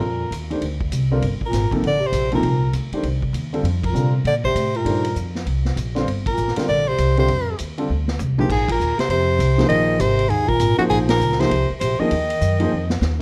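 Hypnotic and cool, this swinging modal jazz passage, cut from a longer piece, sets a bright, close-miked soprano saxophone melody full of vibrato and scooped notes over a clear bass clarinet second line, a woody pizzicato upright bass, a concert grand piano with deep bass and a vintage drum kit with a punchy kick and rolled-off top, heard through light reverb and a dark production, with band accents along the way and drum fills at 7.9 and 12.7 seconds.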